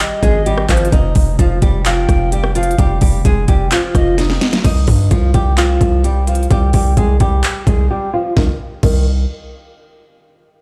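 A dark, hard-hitting trap hip hop excerpt in C minor at 129 BPM with a half-time feel, where a fingerpicked flamenco guitar carries the melody through a low-pass filter and delay, joined until 4.2 seconds by a distant, airy pan flute with breathy chiff and vibrato sitting in the background. Up front, an electronic trap kit with a knocking kick, sharp snare, crisp hats, handclaps, rim clicks and crash punches beside a heavy, sine-based 808 bass with a noise layer and fast, decaying attack. A drum fill leads into a filter sweep on the guitar from 4.6 seconds, then a brief silent gap at 7.9 seconds before the final bars, all heard dry yet carrying the stony ring of a big system in a bare room.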